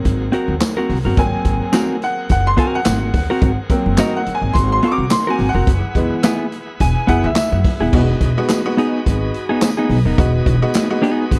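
This playful funk fragment opens with a bright, slightly detuned upright piano soloing in stabs with tape echo, over a woody, thumpy pizzicato upright bass and a swinging big-band kit with a punchy kick, dark cymbals and handclaps. Behind them, a shouting tonewheel organ holds sustained chords in the background, lightly overdriven and turning through a slow rotary speaker. At 0.3 s a clean, compressed semi-hollow guitar joins up front with fingered accompaniment, and a jingly tambourine sits far back from 0.6 s. Swung sixteenths give the groove its lilt, and at 7.9 s the harmony moves from Ab9 and Gb9sus4 to Emaj7 as the piano solo ends and a new section begins. The mix is dry and close, though the drums carry a distant, roomy big-room sound, and the whole is cut from a longer piece.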